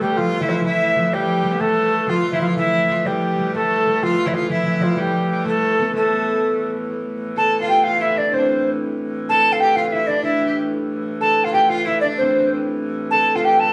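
A mellow alto recorder carries the melody of this medieval dance in A minor, its pure, woody tone marked by a crisp, chiffy attack and vibrato, sitting up front above the rest of the band. The mood is ancient and mysterious, moving at 125 BPM in a straight 6/8 felt in dotted quarters. Beneath it, a single bowed fiddle plays an intense, bright second line with light vibrato, while a fingerpicked concert harp adds a ringing acoustic second line, sitting a little louder than the fiddle. A wheel-bowed, keyed hurdy-gurdy holds a low drone throughout, rich, nasal and boxy, with a smooth, even tone and an airy bow. All four players sound live together in one room under a wet studio reverb, and at 6.9 seconds the tune moves into a new section before this excerpt from a longer piece ends at 13.7 seconds.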